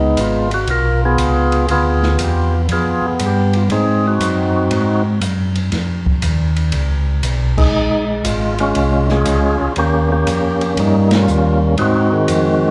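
A percussive tonewheel organ with key click and second-harmonic percussion carries the melody through a slow rotary speaker and slapback echo, while a mellow, round tonewheel organ bass with chorus vibrato sits up front and an acoustic jazz drum kit with dark cymbals and a boomy kick swings underneath in this soulful, greasy soul jazz organ trio excerpt at 119 BPM, heard live through a club PA with light reverb, the band hitting accents at 7.5 and 11.0 seconds over changes that move from Db7 through Bbm7 and Eb7 to Ab7.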